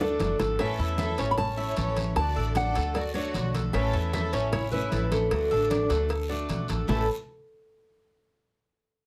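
Sunny and danceable, this short cut from a longer Cuban son and guajira piece moves at 152 BPM in a straight 4/4, in A major. A fingerpicked nylon-string guitar carries the melody with a full-bodied classical tone and audible finger squeak, while a dark, lush violin section, bowed with vibrato, supplies a second line beneath it. The Cuban tres adds mellow, metallic arpeggios on its doubled strings, a picked steel-string acoustic guitar fills in the accompaniment, and a woody, thumpy upright bass played pizzicato sits up front. A drum fill opens the passage, round, low-tuned bongos and cowbell and thick-skinned congas stay in the background, and a raspy guiro joins at 0.2 s. The harmony rocks between D and A before landing on an A5 chord at 6.9 s, set in a moderate studio ambience.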